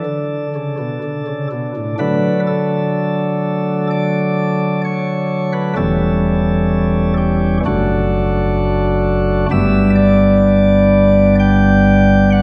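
A lush church reverb with a 2.8-second decay surrounds a solo chamber organ, its light, bright flute stops placed up front with audible chiff and a sparkling edge across a range from E1 to G5. This dark, solemn, chorale-style classical fragment, cut from a longer piece, moves at a rubato 64 BPM in 4/4 and D major. After an opening D5 that lasts until 2.0 seconds, it unfolds a chord progression of D, C#dim/E, D/F# and G.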